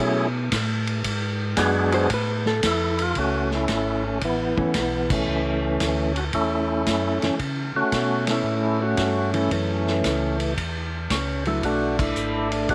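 A percussive organ with key click carries the melody over a round, mellow organ bass line from the start, both turning through a slow rotary speaker, in this bluesy, late-night soul jazz organ trio in F# minor at 113 BPM with swung 8ths, as a gritty vintage drum kit with dark cymbals sits up front from 0.5 seconds, a clean, compressed hollow-body jazz guitar adds accompaniment from 1.9 seconds, and band accents punctuate the light studio reverb.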